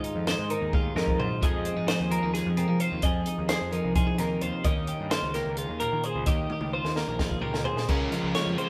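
Wistful and playful, this math rock and midwest emo excerpt moves in 7/8 at 260 BPM in eighths, with a warm twelve-string electric guitar picking clean, compressed chords up front while a second, bright and twangy twelve-string traces high arpeggios through Ab6/9, Fm7 and Eb7. A compact cocktail drum kit with a high-tuned snare, punchy kick and dark cymbals drives underneath, breaking into a fill at 6.5 seconds, as a round, fuzz-soaked electric bass growls below. At 7.9 seconds, on a Db6 chord, a biting, double-tracked overdriven guitar riff breaks in, all of it sitting in a wet stone room where the band plays live together.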